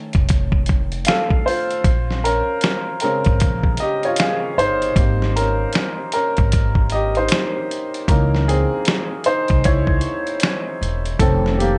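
A swung 77 BPM groove in 4/4 sets a mellow, nostalgic lo-fi hip hop mood in Ab major, carried by a gritty, compressed sampler-style drum kit of finger snaps, hi-hat, a thumpy kick and a fat snare that sounds re-recorded in a large room and sits up front. At 0.1 seconds a pizzicato upright bass with steel strings enters alongside the drums, its acoustic, woody tone staying low in the register. The upright piano takes the lead from the very start, smooth and vintage with a long sustain, its tone softened by cassette-tape colour and a low-pass filter and placed prominently in the mix. Its harmony moves from F7b13 through Bbm7, Abmaj7 and Dbm6 before returning to F7b13 at 11.2 seconds. Light reverb gives the whole piece a gentle sense of space in this short cut from a longer work.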